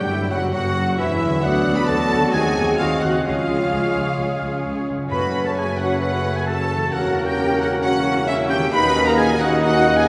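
Dramatic and urgent, this fast romantic orchestral passage in F# minor moves at 133 BPM in a straight 4/4, cut from a longer piece. A close, lush violin section carries the melody with expressive vibrato, while a very quiet, airy silver flute, a punchy oboe, a distant clarinet and a second, smoother violin section in the background trace supporting lines. Beneath them a rich viola section and a roomy bassoon fill the accompaniment and a ringing, fingerpicked harp plays arpeggios, as mellow French horns and trombones hold soft sustained chords and a tight, close-miked trumpet section adds stabs. The low end rests on a focused cello section, a distant double bass section and a roomy tuba, and the timpani sound in the background from 5.1 to 5.8 seconds. The harmony moves restlessly from F#7 through C# and F#m to D#m7, and a long concert hall reverb places the whole orchestra further back in the room.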